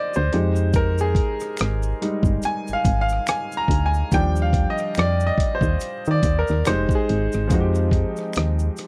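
R&B and neo-soul excerpt at a smooth, sultry 71 BPM in F dorian with swung 16ths, where an intimate, up-front grand piano with audible action noise takes the lead over Fm9 and Ebmaj9 chords, a punchy, round FM bass and a gritty, compressed sampler-style kit with thumpy kick, hi-hat and rim click hold the groove, a close tube shaker with finger snaps and handclaps adds quiet texture, and a clear trombone section with light vibrato punctuates the end with stabs at 7.7 seconds, all captured in a dry, close 1970s-style studio sound.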